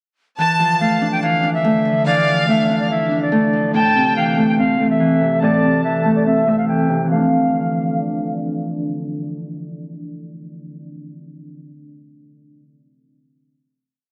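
An airy, distant concert flute with vibrato leads this melancholic, eerie half-time trap piece, looping its melody over a ringing, fingerpicked Celtic harp arpeggio while a biting chamber violin section adds a sparse counter-melody, with tape echo on both the flute and the strings. A glassy FM pad with slow attack, chorus, phaser and its own reverb fades in at 1.2 seconds, sustaining ethereal chords beneath a filter sweep that runs through the opening breakdown. The flute and violins fall away at 8.3 seconds during the final chord, leaving the harp and pad to ring on in a dark, warm mix with light small-room ambience.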